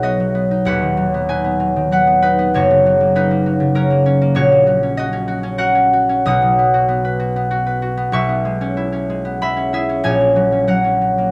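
In a rubato 3/4 that drifts between 86 and 102 BPM, this serene, dreamy classical passage, cut from a longer piece, features a solo concert harp in B major, tuned to A4 = 441 Hz, moving through B, F#, C#m7/B and F#/A# harmonies across its 11.3 seconds. The fingerpicked harp sounds bright and ringing, spanning D#1 to D#6. Close, detailed microphones place it up front, with a light reverb around it.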